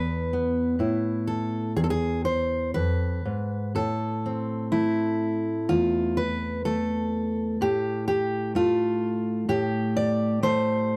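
A fingerpicked steel-string acoustic guitar carries this brief folk passage entirely on its own, its jumbo body giving a full-bodied, up-front voice that spans from a low E2 to D5. The mood is melancholic and haunting, unfolding at a slow 62 BPM in 4/4 with a loose, rubato feel in A minor, tuned slightly sharp to A4 = 441 Hz. The harmony moves from Esus4 to E and settles on A minor at 3.7 seconds, before the chords fall away at 7.6 seconds for the rest of the 11 seconds. Close, detailed microphones capture the guitar with a light touch of reverb, keeping the sound intimate. Cut from a longer piece, the fragment feels quiet and searching.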